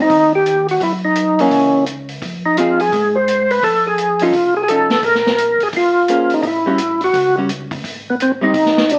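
Heard through the crackle of a very old 78 rpm record and a moderate studio reverb, this brief, swinging soul jazz organ trio cut feels soulful and greasy. Up front, a percussive tonewheel organ carries the melody with key click, third-harmonic percussion, chorus vibrato and a slow rotary speaker, while a second, mellow organ lays down a round, dark bass line with the same vibrato and slow rotary. A vintage acoustic kit with a punchy kick, medium-tuned snare and hi-hat comes in at 0.1 s with a rolled-off top, and a clean, picked hollow-body archtop guitar adds warm accompaniment from 1.4 s to 8.5 s over shifting seventh and extended chords.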